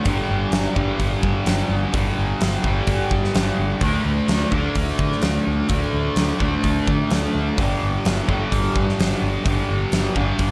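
Shoegaze-leaning dream pop rock at 128 BPM in a straight 4/4, this wistful, hazy excerpt rides a double-tracked fuzz guitar riff that sits up front, distorted and lightly chorused, moving between G5 and D5 chords. Beneath it, a dark, round, foam-muted electric bass and a big-room acoustic drum kit, with a fat snare, punchy kick and hi-hat, drive things along. The whole mix is soaked in a moderate plate reverb over small room ambience, and lossy compression artefacts add a worn edge.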